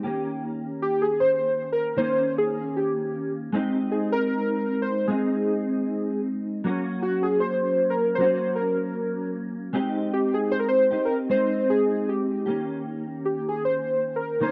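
A detuned, warbling synth-keys melody and a dark, clean electric guitar begin together in this hazy, nostalgic indie pop excerpt in Ab major, unfolding at an unhurried 77 BPM with a gentle sixteenth-note swing. The lo-fi keys, colored by analog chorus, tape echo and a filter sweep, carry the tune over the compressed, fingered guitar, which is tinted with ensemble chorus and vibrato as the harmony moves from Eb7 through Abmaj7 and Gb before returning to Eb7 at 12.5 seconds. Both parts sit up front in a warm, shadowy mix with moderate studio reverb.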